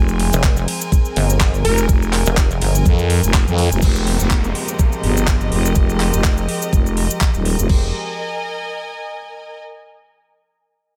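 Gritty and aggressive, this short bass house cut opens on a drop where a growling FM bass and a pulsing, detuned pluck wobble bass pump hard against a knocking, up-front kick, a garage kit with metallic hats and handclaps, and grainy cabasa, while dark, nasal chamber strings hold sustained chords and clear symphonic strings add texture above them, a brief delayed plucky unison lead flashes at 1.6 seconds, and from 3.8 seconds a filter sweep on the FM bass and a background downlifter carry it toward the bare symphonic strings that remain alone after 7.9 seconds.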